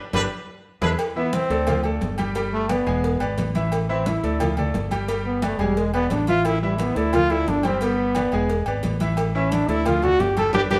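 Salsa with a passionate, fiery drive, cut from a longer piece, opens with a drum fill and band accent in which a distant, clear trumpet and a vintage saxophone section sound briefly before falling away at 0.9 seconds. A brilliant, short-sustain grand piano and a dark, round fingered electric bass carry the minor-key changes throughout, over thin-skinned congas, a low-tuned cowbell, and ringing, dry timbales and agogo bells. From 1.2 seconds a punchy, close-miked trombone takes an up-front solo with vibrato, the whole band sounding live together in a stone room with a lingering reverb, and a final band accent lands at 10.5 seconds.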